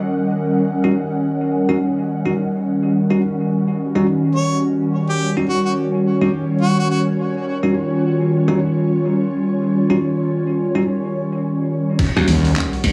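Glitch hop at 106 BPM with a 16th-note swing, playful and gritty, where a warbly, nostalgic tape-like pad and an ethereal airy pad hold an Eb7#9 chord under sidechain pumping while a bell-like tine electric piano stabs through dub echo and 12-bit sampler grit, a bright, close-miked harmonica plays a jazz-style solo with scooped notes from 4.4 to 7.0 seconds, and at 12.0 seconds a heavy saturated wobble bass, a knocking electronic kick, a pitched-down boom bap kit with handclaps, hi-hat, rim click and crash, a very quiet impact, and a growly slap bass entering at 12.2 seconds crowd into a small, reverberant room.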